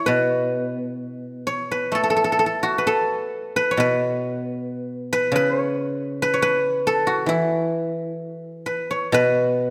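Elegant and pastoral, this short excerpt of Chinese traditional music features a solo guzheng, its acoustic tone ringing and silvery as it is played with fingerpicks and placed up front. The unhurried rubato phrasing in 2/4 ranges between B2 and C#5 across about 9.7 seconds. A moderate reverb in the manner of a scoring stage lends the plucked strings a spacious halo.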